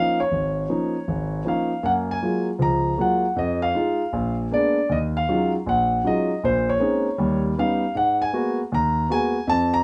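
A swung eighth-note feel in 4/4 carries this short piece of solo jazz piano, cut from a longer performance, with a sophisticated, playful mood. A concert grand plays alone for the full 9.8 seconds, its tone warm with a deep bass and placed up front, ranging from the low register up into the upper treble. Light reverb gives the piano a little air. After a brief opening that runs to 1.8 seconds, a longer second section unfolds through rich extended harmonies, moving from an F#maj9 through altered dominants such as A#7b9 and D#7b13 toward a G#m9. The chord colours, full of ninths, elevenths and thirteenths, give the passage its polished, urbane character.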